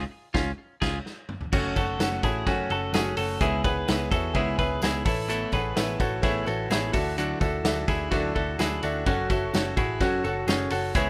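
A bright, twangy clean electric guitar sits up front in this restless, bittersweet stretch of jangly indie pop, picking compressed arpeggios over a second, darker clean guitar that picks out accompaniment in the background. The tune moves at 127 BPM in a straight 4/4 in F# minor, opening on a C# band accent before settling into a progression of F#m, C#m7, Aadd9 and Dadd9 that returns to F#m. A vintage foam-muted electric bass adds a round, punchy low end beneath a loose acoustic drum kit that comes in at 0.3 seconds, with dark cymbals, a medium-tuned snare and a punchy kick in a small, roomy space, and a drum fill at 1.1 seconds. From 1.5 seconds a clear, woody upright piano joins with an intimate, natural touch, short sustain and audible action noise, alongside a jingly tambourine kept very quiet. The rough home demo mix carries little reverb, and the music is cut from a longer piece.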